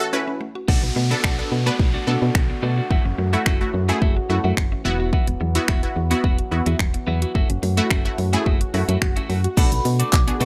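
This confident, bittersweet dance-pop excerpt opens on a short break: a bright, detuned sawtooth unison pluck with phaser and sidechain pumping, mellow French horns holding sustained chords in the background, a woody, very quiet FM mallet pluck tracing arpeggios, and a brief touch of the hollow clarinet-like synth lead. At 0.7 seconds the groove arrives at 108 BPM in a straight 4/4. A punchy, layered electronic pop kit with kick, hi-hat, shaker, finger snaps, handclaps and crash sits up front beside a round, dark FM bass that pumps against the kick. A clean, compressed twelve-string electric guitar picks out a riff with subtle chorus, while a downlifter and swell drift in the background. The harmony moves through F#m7, Bm7 and Esus2. At 9.6 seconds the soft, warbling square-and-triangle lead returns with vibrato, chorus and tape echo, and a crisp, very quiet human group handclap lands at 10.1 seconds, all under light reverb.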